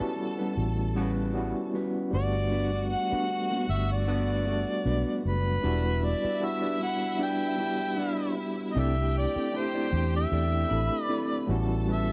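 A round, foam-muted electric bass, a barky overdriven electric piano with fast tremolo, a dark, clean guitar riff and a distant, lush violin section open this romantic soul passage, cut from a longer piece, with a lightly swung groove. Tight vintage horn stabs appear from 1.0 to 4.6 seconds, and at 2.1 seconds a warm, up-front harmonica takes the melody with soft attacks, scooped notes, vibrato and tape echo. The sound is dry and close, in a 1970s studio style.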